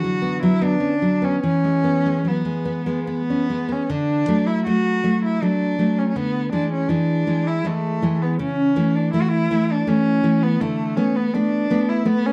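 From the opening moment a fingerpicked, full-bodied nylon-string guitar and a smooth, bowed cello singing the melody with rich vibrato share this tender, warm romantic duo in a rubato 3/4 at 71-85 BPM, tuned to A4 = 439 Hz and set in light reverb with a dark production, its harmony moving from Bm/D and E into a second section at 3.9 seconds that passes through D, E7/D and A/C# before resting on Bm7/D in this brief excerpt from a longer piece.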